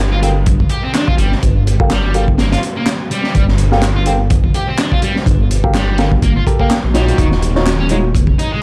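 Dusted with vinyl crackle and a light reverb, this dark, raw breakbeat clip has a funky, swung feel. A crunchy, saturated drum kit sits up front with a punchy kick, a high-tuned snare and hi-hat, its top end rolled off. Layered electronic handclaps enter at 0.9 seconds, sitting far back as if re-recorded in a large room. A deep, rumbling detuned saw bass holds the low end up front with a beating, sustained tone, while a double-tracked fuzz guitar plays a compressed, distorted riff through digital delay. Short grand piano stabs run through a filter sweep and their own delay over Gm9, and the harmony shifts to Ebm9 at 7.2 seconds.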